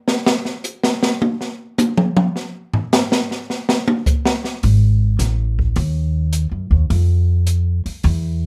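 An open acoustic drum kit opens this late-night, smoky swing and bop fragment alone, its high-tuned snare, boomy kick, hi-hat and toms sitting up front in a studio room with a moderate club reverb. At 4.6 seconds a pizzicato upright bass enters, woody and close with steel strings, moving in its low register beneath the kit. The drums drop out at 8.2 seconds, leaving the bass to carry the brief passage to its end.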